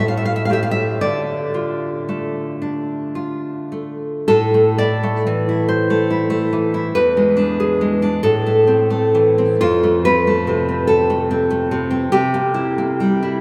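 Flowing in a lilting 6/8 with a free, rubato feel, this romantic piece for solo classical guitar moves slowly and breathes at its own pace. The mood is melancholic yet intimate. A single nylon-string guitar is fingerpicked up front, its fresh strings giving a bright tone, and a finger squeak adds a close, human touch as it ranges from low E2 up to F5. The playing sits in a vast, echoing space, with a wet cathedral reverb that lets each note hang and bloom long after it is struck. An opening passage settles into a minor mood before the music turns toward a new tonal centre at 4.3 s, drifting through a sequence of chords before arriving on a dominant seventh harmony as this short excerpt, cut from a longer piece, ends at 13.4 s.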